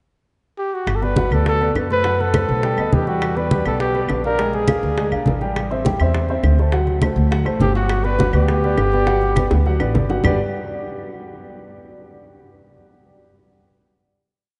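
Lively and sunny, this short Afro-Cuban jazz piece in G major races at 205 BPM, with a dark, breathy trumpet stating punchy call-phrase motifs up front from 0.6 seconds, a thumpy, gut-string upright bass playing a pizzicato tumbao that anticipates the chords, a concert grand piano laying down an octave montuno with deep bass and long sustain, and, in the background, low-tuned congas with slaps and open strokes, tight high-tuned bongos with hand bell, and woody claves on a two-bar time line, the ensemble set in a vast, echoing cathedral space, with a drum fill at 9.5 seconds before the final chord at 10.2 seconds.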